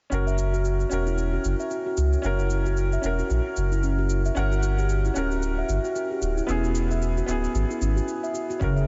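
Organic downtempo with a mystical, earthy mood, this short cut from a longer piece moves with a swung sixteenth-note feel. A felt-muted upright piano supplies soft, intimate accompaniment through a low-pass filter, delay and sidechain pumping, while a steel tongue drum plays round, ringing, meditative arpeggios with rubber mallets, also filtered and echoed. A deep, sustained sine sub bass sits up front beneath them, and an overdriven electronic cabasa adds a faint, produced texture. After a break from 8.1 seconds, a detuned sawtooth analog pad with chorus, tremolo and pumping arrives at 8.6 seconds, alongside a gritty, thumpy, tape-warm kick in the background. The dreamy mix is soaked in a huge ambient reverb, with the highest frequencies rolled off into a hazy glow.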